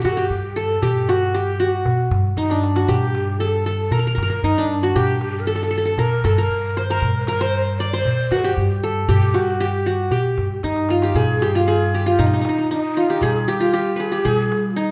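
A bright, plectrum-plucked qanun carries the melody up front from the first moment, alongside a breathy, mellow end-blown ney as a second line in the background and a woody pizzicato upright bass, with the darbuka entering just after. This soulful, hypnotic Arabic maqam ensemble piece moves at 116 BPM in a straight 4/4, grounded in G maqam nahawand before turning to G maqam hijaz at 11.2 seconds. The qanun's triple strings give its notes a bright-edged ring, while the reed cane ney adds vibrato, soft attacks and an unsteady, human quality. The clay-shell, natural-skin darbuka sounds close and dry, and it plays fills at 2.4 and 10.6 seconds. The band plays live in one room, set in a moderate, large studio reverb, and the passage is cut from a longer piece.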